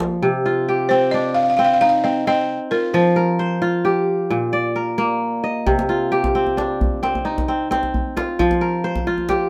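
A light reverb surrounds this short, reflective cut from a longer piece of West African traditional string and xylophone music, with a flowing, straight feel in 12/8. The kora carries the whole passage with bright, ringing, crisply fingerpicked arpeggios placed up front, ranging from its low strings to the upper register. A woody, dry balafon played with rubber mallets adds a buzzing melody up front from 0.9 to 3.6 seconds, staying in a high, narrow range. The djembe sounds warm, deep and acoustic in a small room, making a brief touch at the very start before returning at 5.7 seconds and playing until the close. The harmony moves through C minor, F5 and B-flat, then circles back to C minor and F5.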